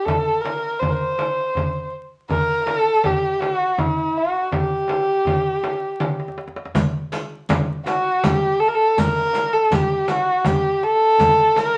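Longing and soulful, this Persian modal ensemble excerpt in avaz esfahan on G moves at 81 BPM in 3/4, led by an up-front, dark, woody bowed kamancheh with vibrato and portamento over a small, bright, saturated frame drum and a deep, close tombak, while a drum fill at 6.0 seconds ushers in a riq with dark jingles played by soft hands from 6.8 seconds, the recording carrying moderate studio reverb and vinyl crackle.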